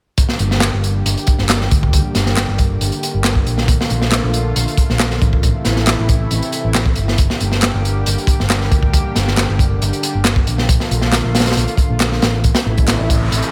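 A crunchy breakbeat drum kit sits up front in this swaggering, raw breakbeat cut, its saturated, gritty sound carrying a tight kick, a medium-tuned snare and hi-hat with a rolled-off top, moving at 137 BPM in a straight 4/4. Beneath it a picked electric bass, dark and round through a low-pass filter, holds the low end in G dorian. A lush unison pad of detuned sawtooth and square waves with a noise layer sustains chords from Gm through Bbmaj7 and Am, its slow attack and bright, airy chorus shimmer pumping against the sidechain. Electronic handclaps, layered and tape-warm, sit in the background of this dry mix. A noise sweep enters at 12.8 seconds and the kick drops out at 13.3 seconds, as this passage cut from a longer piece closes at 13.5 seconds.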